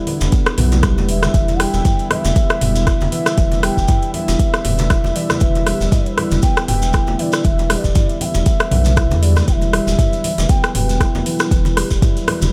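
A deep, up-front electronic kick drives this afro house excerpt at 118 BPM in 4/4, with a 16th-note swing of 56% giving the groove its sway, while a deep house kit adds metallic hats, rim clicks and toms with a tape-warm, layered sheen. Hard-handed congas sit bright in the background and a grainy, distant shekere fills out the percussion, all resting on a round, dark analog bass that pumps against the kick on a sustained E minor seventh chord. A ringing handpan of nitrided steel spins meditative arpeggios with sharp finger strokes, its bright tone carried by delay and the same pumping motion. Behind it, a smooth, detuned sawtooth pad holds sustained chords with chorus and a soft attack. From 1.1 s to 11.2 s a mellow, hollow bass bansuri floats an airy, tongued melody with vibrato and delay, lending the small-room sound a spiritual, earthy calm.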